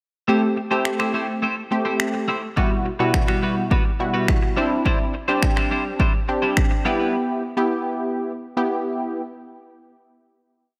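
Summery and euphoric, this short dance-pop piece stays in a single verse, where a punchy, detuned sawtooth polysynth comp pushes its chords under chorus and sidechain pumping, a bright, twangy twelve-string electric guitar plays a choppy funk-style riff through lush chorus until 7.2 seconds, and a tape-warm house drum kit of finger snaps and a punchy kick drives a four-on-the-floor beat from 0.9 to 6.7 seconds, set in a moderate hall reverb within a rough home demo mix.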